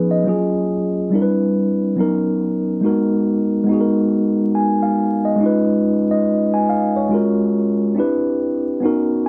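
A mellow tine electric piano plays alone from the start, its clean, up-front tone colored by cassette tape and a built-in speaker sound, moving through lush ninth chords in a reflective, melancholic hip hop groove with a swung sixteenth feel, wet studio reverb and vinyl crackle, before a brief piano fill at 8.8 seconds closes this short cut from a longer piece.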